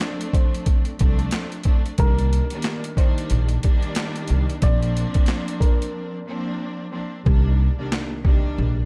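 Piano, strings and drums open together on this moody, dark boom-bap hip-hop excerpt in C dorian at 91 BPM with a 60% swing, where a mellow upright piano with audible action noise and short sustain carries a delayed melody over bowed strings with vibrato and a gritty, overdriven sampler-style kit with a thumpy kick, high-tuned snare, hi-hat and handclaps, joined at 1.0 seconds by a growly pizzicato upright bass up front, moving through Dm7, Cm7 and Bb chords in a small room before a break at 5.9 seconds and muted hi-hats from 7.3 seconds.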